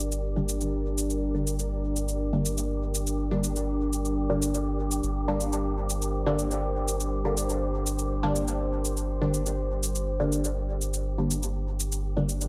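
A hazy, cavernous dub techno excerpt in G minor at 122 BPM opens on a moody ambient pad of detuned sawtooth chords, softened with chorus and reverb. Beneath it sits a round, soft sub bass on G, and above it drifts an airy, breathy wind-like noise texture. An overdriven, up-front electronic cabasa enters at 0.1 seconds, and from 0.4 seconds a muted, filtered dub chord stab with a moving notch, phaser and dub echo sounds over the held Gm harmony, all within a dry, gritty recording touched by light digital ambience.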